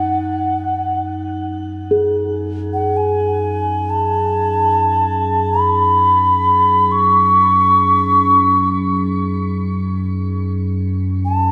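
From the opening moment a hollow, airy alto ocarina sings an up-front, vibrato-laced melody through shimmer reverb and diffuse ambient delay, over a deep, rumbling, wave-folded drone on F#2 thickened by lush chorus and a quartz singing bowl ringing with slow beating under a felt mallet, all in a spacious, haunting F# dorian world meditation in free time, tuned to A4 = 443 Hz and bathed in cathedral reverb, until the bowl stops at 10.9 s in this fragment cut from a longer piece.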